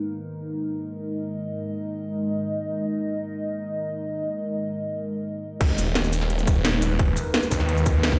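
A dark, tense excerpt of technical drum and bass opens on a deep, moody analog pad holding sustained chords, its detuned square and sawtooth layers colored by chorus, phaser and sidechain pumping. At 5.6 seconds the drop arrives: a snarling, growling saw bass with tube-saturated distortion and pumping joins an overdriven, tight electronic kick and an up-front kit of cracking snare, metallic hats, shaker and crash cymbal. The music sits in a stone room reverb, as if played through a big sound system in a bare space.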